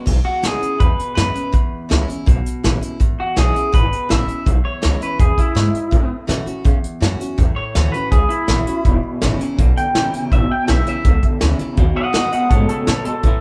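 Rockabilly at 164 BPM in E mixolydian, rowdy and retro, in which a twangy, slightly broken-up electric guitar carries the melody through spring reverb over a full-bodied picked dreadnought acoustic, a woody, thumpy pizzicato upright bass on gut strings and an up-front brush kit with a punchy kick, while a second lo-fi, compressed electric guitar with tremolo barges back in with its riff at 8.9 s, all captured as a live band in one small room with a faint mains hum.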